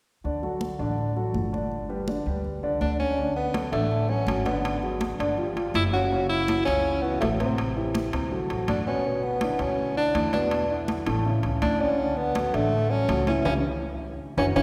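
Lively and sophisticated, this Afro-Cuban jazz excerpt at 164 BPM in D major opens with up-front concert grand piano accompaniment, woody pizzicato upright bass and hard-handed, high-tuned congas, before a breathy tenor saxophone enters at 2.8 seconds with a subtone solo of scooped notes and vibrato, ringing metal-shell timbales join at 3.5 seconds, and a drum fill with a band accent lands on a C#dim chord at 13.5 seconds, all bathed in a church reverb.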